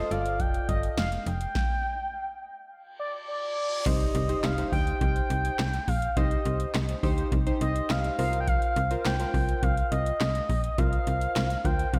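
A smooth, expressive sawtooth synth lead with vibrato, chorus and analog delay carries the melody in this cool, driving synth-pop excerpt at 104 BPM in C dorian, over snappy, metallic slap-like FM bass, round chorused analog keys with a filter sweep and a dry, punchy analog drum machine with deep kick, handclaps and metallic hats, as the band stops from 1.6 to 3.9 seconds while a reverse cymbal rises into an impact that launches the Cm groove, all bathed in a dreamy, lush hall reverb.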